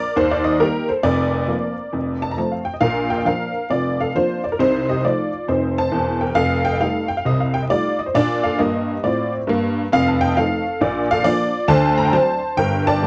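Stride piano jazz in Bb major swings exuberantly at 135 BPM as a solo honky-tonk upright piano, detuned, jangly and woody, sits up front under close, detailed microphones with light reverb and vinyl crackle, ranging from E1 to Bb5 and moving through F7 and F9 changes before settling on Bb and turning to D7 at 11.7 seconds in this short cut from a longer piece.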